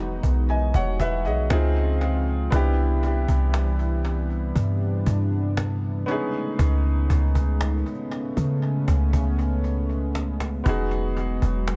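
Over a straight 4/4 feel, this dreamy, smooth contemporary R&B excerpt pairs a snappy acoustic cajon, which enters at 0.2 seconds and plays a fill from 9.6 to 10.7 seconds, with a deep, boomy 808-style bass sitting up front, an intimate grand piano with audible action noise, and a shimmering, retro chorused pulse-width pad holding sustained chords, while tape echo on the piano and cajon gives the otherwise dry mix its echo-heavy character.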